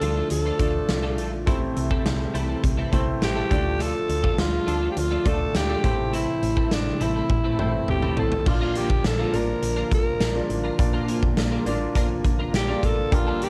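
A straight 4/4 pulse at 103 BPM drives this urgent, dramatic 1980s-style pop excerpt, anchored by a huge arena drum kit with a punchy kick up front and a round, dark FM bass, with a drum fill from 7.3 to 8.5 seconds carrying the Dm-to-Am progression into a new section on Bb. A raspy, gritty alto saxophone carries the melody up front with light vibrato, while in the background sit a clear concert grand piano with audible action noise, a smooth, detuned analog pad with lush chorus, and a clean, picked twelve-string electric guitar riff with ensemble chorus and analog delay. Cassette tape colors the saxophone, piano, pad and guitar, and light reverb lends the whole a homemade cassette feel.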